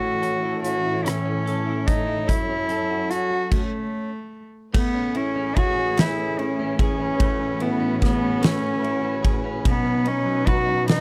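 Heartfelt and tender, this six-eight pop ballad in a straight 6/8 unfolds slowly, heard here as a short cut from a longer piece. A single bowed cello carries the melody up front, its rich, reedy voice showing an airy bow and a gut-string, period-style tone with a slightly boxy, nasal edge. Beneath it, a double-tracked clean electric guitar recorded direct adds bright, twangy, compressed picking, while a muted string section plays con sordino, holding lush, veiled chords with soft attacks and gentle vibrato. A huge arena drum kit enters at 0.2 seconds with a punchy kick, a fat snare, rim clicks, hi-hat, ride and crash, sounding big and up front. The band halts for a stop from 3.5 to 4.7 seconds before the second section opens on an Amaj7 chord, moving to Badd9 near the close, all captured in a dry, close 1970s-style studio sound with light reverb.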